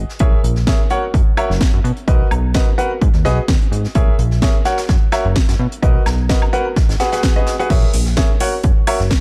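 Energetic yet bittersweet, this piano house excerpt moves at 128 BPM with a light 16th-note swing, as a clear, vintage grand piano riff with short sustain and digital delay cycles through A#m7b5, F#7, Bmaj7 and G#m7 over a punchy, funky sawtooth-and-square analog bass with a fast-attack filter pluck, both pumping to the sidechain. A tape-warm electronic kick sits up front, joined at 0.7 seconds by an overdriven house kit with a cracking snare, metallic hats, crash and woodblock. Underneath, a distant acoustic brush kit adds roomy hi-hat and snare, all wrapped in a dark small-room ambience with a faint mains hum.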